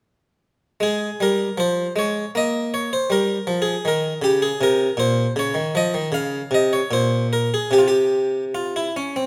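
Classical, baroque-style suite movement in F minor for solo harpsichord, solemn and grave at 78 BPM in 3/4 with uneven, rubato beats. The airy, round, plucked tone of a single-strung Flemish-style instrument sits up front, captured by close, detailed microphones within a moderate recital-hall reverb, and it moves from Fm through Eb7, Bbsus2 and Db to a closing Csus4 between 0.8 and 9.3 seconds in this passage cut from a longer piece.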